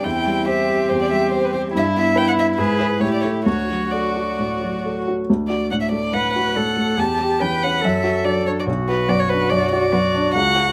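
A quick 4/4 pulse at 142 BPM, handled with rubato, drives this graceful, spirited classical-period movement for piano quartet in D major, cut from a longer piece and set in light reverb. Up front, a rich violin carries the melody with light vibrato and an airy sul tasto bow, while a dark, smooth-topped cello and a second, warm violin play intimate, soft-edged second lines beneath it. A warm grand piano supplies the accompaniment with audible action noise, and the harmony moves from C/E through A7 to D, reaching Bm by 8.7 seconds.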